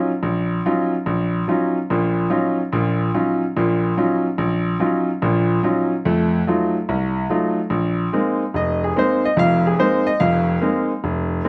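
Set in the moderate reverb of a large studio, this intense yet cool jazz fragment features a solo grand piano, clear, smooth and vintage in tone and placed up front, swinging at 144 BPM in Eb dorian with tuning a touch below standard at A4 = 436 Hz, moving from Ebm9 through F7b9 at 6.0 seconds to Bb9sus4 at 7.7 seconds before it is cut off at 11.5 seconds.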